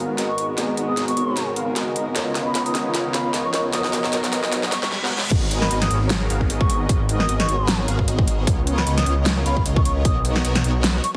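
In this dreamy, lush future bass excerpt with a half-time, lightly swung feel, veiled con sordino strings hold sustained chords in the background until 4.9 seconds beneath a fat, nasal, pumping polysynth riff and a thick, detuned saw bass, while a pure, wooden baroque flute melody with vibrato and digital delay floats behind a dubstep kit of huge snare, metallic hats and crash, as faint risers and a reverse cymbal drive a filter-swept build-up into the drop at 5.3 seconds, where a punchy, up-front electronic kick enters, all wrapped in a lush hall reverb and a heavily compressed, radio-like sound.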